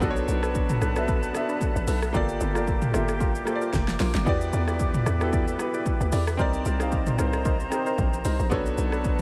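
A bouncy, hollow log drum bass and a punchy deep house drum kit with a fat snare drive this hypnotic, late-night amapiano fragment, while a dark, worn grand piano with audible action noise plays accompaniment, an airy flute section holds sustained chords with vibrato and sidechain pumping, a mellow organ stab sits in the background through chorus and diffuse delay, a drum fill arrives at 3.7 seconds, and a huge reverb soaks the mix in a dreamy haze.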